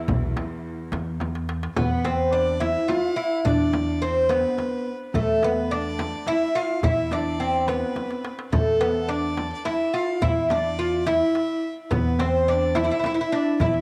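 Longing and hypnotic, this Arabic maqam ensemble excerpt in E maqam hijaz moves at 71 BPM in 6/8, opening with a close, bowed cello drone on E2 that gives way at 1.8 s to an up-front, woody, plectrum-plucked fretless oud melody with double strings and a bright, nasal violin second line with light vibrato and tape echo, all over a dark, thumpy pizzicato upright bass with transformer saturation and a crisp metal-shell darbuka and soft-handed frame drum in the background, with drum fills at 1.2 and 8.0 s and a moderate spring reverb on a cassette home recording.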